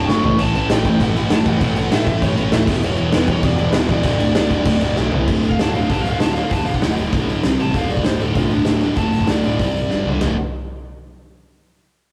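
This cut from an upbeat, energetic punk rock track opens with a double-tracked, sludgy overdriven guitar riff, a picked lead guitar through a small cranked amp, and a bright, fuzzy picked bass in the background, as a big, dark, smooth acoustic drum kit with a punchy kick enters with a fill. The drums and riff guitar sit up front, and after another drum fill at 5.0 seconds the lead guitar takes a solo from 5.3 seconds over chords moving through A5, E5, D5, C5 and G5. It sounds like a rough rehearsal-room take, with moderate stone-room reverb.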